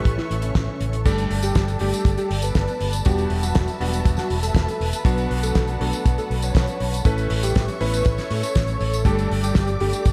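A straight 4/4 pulse at 120 BPM drives this danceable, bittersweet italo disco fragment from 0.1 s, with a tight, dry acoustic kick and a damped 70s kit of fat snare, dark cymbals, hi-hat and tambourine in studio reverb, beneath a punchy, up-front fingered electric bass with an envelope filter, cutting chorused stabs from a bright electric grand piano, lush bowed strings holding sustained chords, and a thick, detuned sawtooth unison lead with sub octave and vibrato carrying the melody through diffuse ambient delay, the dreamy plate-reverb mix moving from A through Gsus2, Em7 and Bm.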